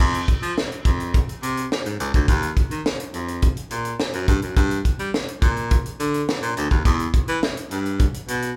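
From the first beat, a bright, close-miked baritone saxophone carries the bass line in an early-eighties boogie funk groove at 105 BPM in F dorian, its pop-style phrasing marked by scooped notes and a light vibrato as it moves between Db2 and G3. A tight, acoustic funk kit sits up front beside it, with a high-tuned snare, a snug kick, hi-hat and crash cymbal carrying a natural small-room sound. With the band playing live in one room under light reverb and tuned slightly below standard pitch, this short section, cut from a longer piece, has a late-night, danceable pull.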